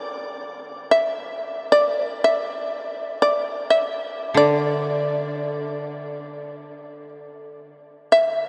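Unfolding in free time, this austere, still fragment of Japanese chamber music sets a bright, buzzing shamisen melody, plucked with a plectrum and held between D5 and E5, up front in a vast, echoing space of huge ambient reverb, while a mellow, woody koto joins on a low D3 accompaniment from 4.3 to 7.7 seconds.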